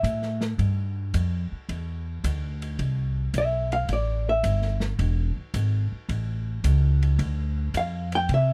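A hollow-body jazz guitar solos from the first moment in this short small-group swing and bop excerpt, set at 109 BPM in 4/4 with a swing feel on the eighth notes. Its clean, dark, fingered tone sits up front and compressed, ranging from D5 to G5 over changes that move from G5 through Cmaj7, E and A to Dm7. An acoustic upright bass plays pizzicato underneath, woody and thumpy with steel strings, sitting prominently in the mix. A softer open jazz drum kit of hi-hat, kick, ride and snare adds airy, dark cymbals, a medium-tuned snare and a boomy kick, captured in a small room. The whole recording is dry and close in a 1970s studio style, giving the swinging mood a warm feel.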